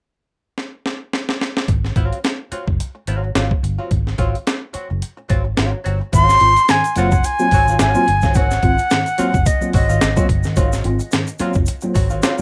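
A swung sixteenth-note funk groove at 108 BPM in 4/4 opens with a breakbeat sampler-style drum kit that starts with a fill at 0.6 seconds. Its compressed, overdriven sound puts a thumpy kick, a high-tuned snare and hi-hat up front. A vintage fingered electric bass joins at 1.7 seconds, dark, foam-muted, round and punchy, sitting low between Gb1 and Ab1 under an Ab6 chord, and at 2.0 seconds an archtop guitar adds clean, picked hollow-body accompaniment through a wah. At 6.1 seconds the harmony moves to Ab13 as a breathy silver concert flute takes the melody, close-miked and expressive with a straight, tongued tone and tape echo. Alongside it, a worn, slightly out-of-tune tine electric piano plays stabs through a combo amp with ensemble chorus, and a grainy, bright tube shaker sits in the background. The mood is funky and gritty in Ab mixolydian, with light reverb and a rough home-demo mix, in a passage cut from a longer piece.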